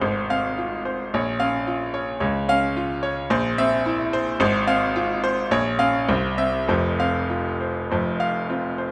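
Set in a flexible 2/4 with a rubato feel, this short cut from a virtuoso classical piano study sounds stormy and passionate. A clear baby grand piano plays alone from 0.0 to 8.9 seconds, ranging from deep bass to the upper middle register as the harmony passes through minor chords and a dominant seventh before landing on a bare open fifth. Close, detailed miking places the instrument present and up front, with a light touch of reverb around it.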